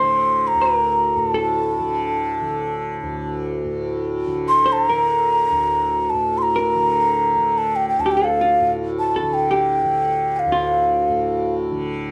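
A dark, moderately reverberant studio sound frames this meditative, longing Hindustani classical passage in free time in raga Bhairavi on D, cut from a longer piece, where an airy, close-miked bamboo bansuri with a crisp attack and straight tone sings the melody up front while a clean, compressed, picked hollow-body electric jazz guitar traces a quieter second line, both floating over a softly plucked, shimmering, buzzing tanpura drone.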